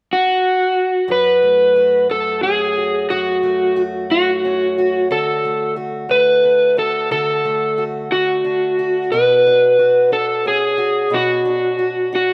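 This pop piece in F# minor moves at 60 BPM in a straight 6/8, with an aching, dramatic mood, and it is cut from a longer piece. An overdriven electric slide guitar, played with fingerpicks, carries the melody and opens alone at 0.1 s with a dark, up-front tone that sits high in the mix. At 1.1 s a fingerpicked acoustic archtop guitar joins as accompaniment, its warm, low-lying voice set well beneath the slide, with audible finger squeak. The harmony moves from F#m to D and then to Bmadd9, giving the melody a brooding backdrop. A moderate, lush hall reverb with a long tail surrounds the pair, though the overall mix keeps the rough, unpolished feel of a home demo.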